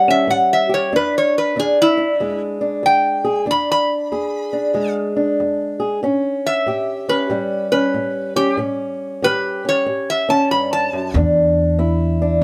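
A metal-body resonator guitar played with a steel bar and an old ladder-braced acoustic guitar open this fragment of acoustic country blues together, setting a rollicking yet laid-back swing at 94 BPM in 4/4. The resonator, worn with fingerpicks, carries the melody as the solo voice, its bright, nasal, metallic slide tone sitting up front. Beneath it, the fingerpicked acoustic guitar supplies a warm, boxy, woody accompaniment on old strings, moving between A7 and E7. At 11.1 seconds, as the slide line stops, a pizzicato upright bass on steel strings enters with a warm low E and plays to the end at 12.4 seconds. Light reverb gives the duo-sized sound a touch of room.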